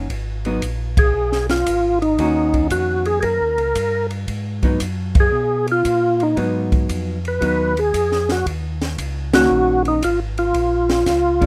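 Smoky and bluesy, this soul jazz organ trio excerpt swings at 115 BPM in Eb minor, with a gritty, overdriven tonewheel organ melody entering up front at 1.0 seconds over a clean, dark hollow-body guitar comping, a round, mellow organ bass line with key click and slow rotary speaker, and a dry, punchy cocktail drum kit with dark cymbals, all punctuated by band accents at 0.9, 5.1 and 9.2 seconds in a rough home-demo sound.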